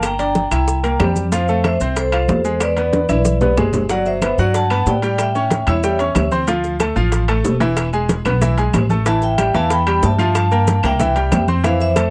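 A passionate, driving salsa cut at 186 BPM in A minor opens with a full band at once: a brilliant, polished grand piano up front, a woody pizzicato upright bass, and a metallic vibraphone melody played with hard mallets and a medium motor vibrato. Beneath them sit ringing congas, tight high-tuned bongos, vintage metal-shell timbales, distant claves and grainy maracas, with a drum fill from 2.9 to 3.9 seconds leading into a new section whose chords move from Gmaj9 through A7 and Dm. The vibraphone drops out at 6.3 seconds and returns at 9.1 seconds over Asus2, Gm7 and C, all in a dry, close 1970s-style studio sound with light reverb.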